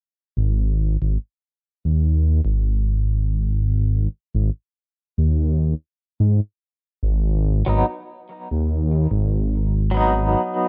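A slow 4/4 groove with a light swing on the sixteenths sets up this smoky, cinematic trip hop fragment, cut from a longer piece. A dark, detuned saw bass carries it from the start, deep and rumbling, its unison voices beating against each other with a fast attack and sustained, up-front tone. The harmony sits on a bare G#5 before moving to B/G# at 7.0 seconds, and a clean, picked electric guitar arrives at 7.7 seconds, compressed and twangy, shimmering with tremolo and trailed by tape echo. The bass drops out at 10.4 seconds for a brief break, leaving the guitar to finish alone. The sound is dry, colored throughout by worn cassette tape whose warbly pitch drift gives the whole fragment an aged, hazy feel.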